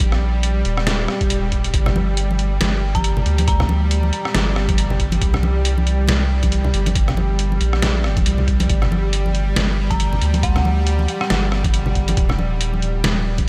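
A nasal, string-like sawtooth drone with vibrato and its own reverb opens this meditative, cavernous deep dubstep excerpt in G harmonic minor. It sits over a round, soft sub bass up front, a thumpy pitched-down kick, and a gritty, compressed trip hop sampler kit of hi-hat, rim click and medium-tuned snare, all in a swung half-time feel at 138 BPM. Bright, dry congas with dub echo join in the background at 1.9 seconds, and an eerie, inharmonic FM bell with chorus, phaser and dub echo surfaces faintly at 2.9 and 9.9 seconds while the chords move from Eb through Gm, C5 and G5.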